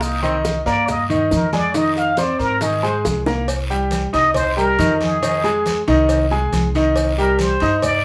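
A distant, roomy trumpet with a plunger mute carries the melody in a jazz-style solo with a wah-wah edge through the first 3.5 seconds, and a drum fill from 3.1 to 3.5 seconds leads into the next section of this nostalgic Cuban son and guajira cut from a longer piece. An intimate grand piano sits up front with arpeggios and audible action noise, while a woody, growly pizzicato upright bass with steel strings anchors the harmony as it moves between Cm7 and Fm7 before resolving to C minor. In the background, round, low-tuned bongos with cowbell, bright hard-hand congas with a vintage tone and grainy, saturated maracas fill out the percussion, joined by a close, raspy guiro, all in a wet live-room ambience.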